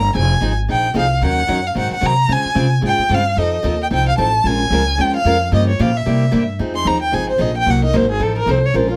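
A swung 4/4 pulse at 223 BPM drives this fiery, bittersweet stretch of jazz manouche acoustic string swing in F minor, moving from Fm7 through Dbmaj7 and F7 toward a C7 turnaround. Up front, a woody, thumpy pizzicato upright bass on gut strings holds the low end, while a parlour steel-string guitar with fresh strings picks the accompaniment and a close, warm bowed violin sings the melody with vibrato, portamento and a soft attack. At 6.6 seconds the violin breaks into an expressive solo, heard through light reverb.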